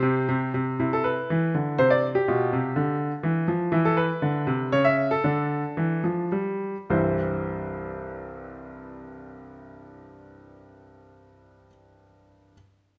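A brilliant, up-front grand piano plays this restless, serious classical-period sonatina passage alone in C major and 3/4, moving with rubato between 99 and 127 BPM, slowing from 3.0 to 6.9 seconds before settling back on C, all wrapped in a moderate recital-hall reverb and cut from a longer piece.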